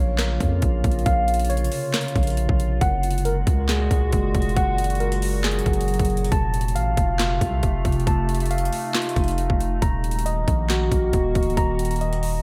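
A light reverb frames this hard-hitting, eerie trap excerpt, cut from a longer hip hop piece in Bb minor at 137 BPM with a half-time feel. A glassy, ethereal FM pad holds sustained chords with a slow attack and long release, widened by ensemble chorus and its own reverb. Over it, a mellow tine electric piano plays clean arpeggios up front, shaded by subtle chorus, a low-pass filter and delay. Beneath, a deep, sine-toned 808-style bass sounds long notes with a fast attack that decay, sitting forward in the mix. From 0.2 seconds an electronic trap kit hits hard with an overdriven, hard-clipped kick, sharp snare, metallic hi-hats and handclaps. The harmony moves from Bbm through Gbadd9 and F to Ebm.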